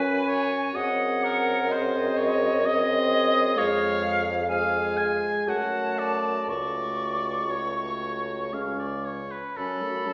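A slow, melancholic and solemn passage for wind quintet opens with all five instruments sounding together from the first moment, cut from a longer romantic movement in F# minor. It moves in a rubato three-beat pulse at roughly 57-65 BPM. The clear oboe sits up front with a light vibrato, carrying a second line beneath the silver concert flute, whose pure, metallic melody is tongued and sung with vibrato from a more distant place high above. Underneath, the mellow horn, clarinet and bassoon form the accompaniment and bass. The horn enters each note with a soft attack, the clarinet rests roomy in the background, and the bassoon's low notes have a smooth top. The harmony drifts from an open F# through G#7 over F# and F minor before settling back on F# minor near 9.6 seconds, all heard through the long, wet reverberation of a recital hall that leaves the sound gentle and rounded at the top.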